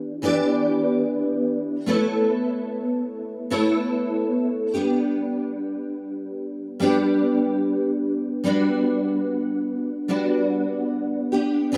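Laid-back and dreamy, this short indie pop passage cut from a longer piece moves at an easy 73 BPM in 4/4 with a gentle sixteenth-note swing, centered in G major and tuned a hair below standard pitch. A single picked steel-string acoustic guitar carries it alone from start to finish, its full-bodied dreadnought tone sitting up front and ranging from E3 to D5. Ensemble chorus, a warbly pitch drift and analog delay give the guitar a hazy, wavering shimmer. The harmony moves from Em7 to Aadd9 at 1.9 seconds and settles on G, then a second section opens on Gmaj7 at 8.4 seconds and runs to the close at 11.8 seconds. A wet small-room reverb and a rough home-demo mix lend the recording an intimate, unpolished character.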